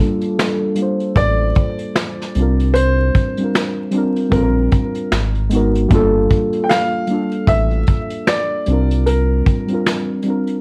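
Lo-fi hip hop excerpt, nostalgic and hazy, at 76 BPM in G dorian with swung 16ths. Muted, felt-like synth keys, softened by chorus and cassette-tape character, open at 0.0 s alongside a vintage brush kit of punchy kick, medium-tuned snare, hi-hat and finger snaps. A round, deep analog bass and an intimate, woody upright piano carrying the melody, its action noise audible, join at 1.2 s, and the bass drops out at 9.4 s. All of this sits in a moderate studio reverb under a haze of vinyl crackle, over chords moving from Gm9 through C9sus4, Bb6 and Abm9.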